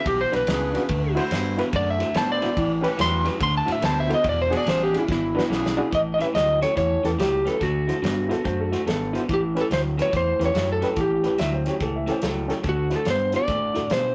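A soulful, laid-back electric blues shuffle with a loose swing, cut from a longer piece. An up-front slide guitar, compressed and slightly broken-up, carries the melody and takes a solo over the first 5.9 seconds. Beneath it, a lo-fi picked guitar through a small old amp plays the riff, a round, dark fingered bass holds the low end, and an overdriven electric piano adds reedy, barky accompaniment with a fast tremolo through a combo amp. A tight, clear jazz-style horn section punches in stabs until 5.9 seconds, just as a drum fill from the soul kit, with its dark cymbals and tight kick, leads into the next passage. From 8.3 seconds a woody, boxy upright piano with audible action noise adds an intimate second line over chords built on ninths and sevenths. The rough rehearsal-room sound carries tube saturation and a moderate studio reverb.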